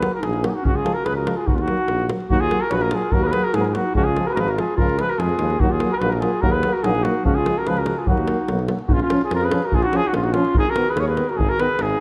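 A brisk 145 BPM straight pulse in 2/4 is driven by a deep, dry davul, setting a bittersweet yet fiery Balkan brass band excerpt in Eb minor that moves from Ebm and Db to Bbm and Abm near its close at 8.9 seconds. A mellow cornet with light vibrato and tape echo carries the melody up front, supported by a mellow clarinet second line, while two euphoniums, one clear and faint and the other warm and distant, fill the accompaniment over a roomy tuba bass. A moderate concert hall reverb and dark production give the band a velvety depth.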